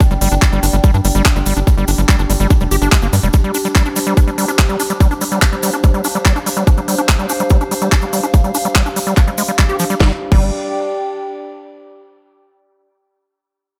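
A driving, hypnotic psychedelic trance piece at 144 BPM in straight 4/4 opens at once with a tight, up-front electronic kick, a garage kit's cracking snare, crisp hats, handclaps and crash, a grainy cabasa far in the background, and a warbling, nostalgic lo-fi pad with chorus and sidechain pumping, while a squelchy, gritty acid bass riff with dub echo carries a filter sweep until 10.0 seconds and a punchy sawtooth sequencer bass drives underneath from 0.1 to 3.3 seconds before returning at 10.0 seconds, set in light digital ambience.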